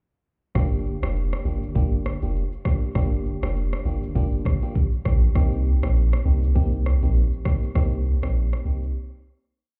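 Mellow and smooth, this short afrobeats piece sets an electronic afro-pop drum kit groove of soft, deep kick, syncopated rim clicks and shaker beneath a bouncy, punchy sine sub bass with a pitch-drop attack and warbling, vintage FM electric piano chords with a noise layer moving from Gm7 to Cm7, all heard as if muffled through a wall into club reverb, fading from 7.8 seconds before a break at 9.0 seconds.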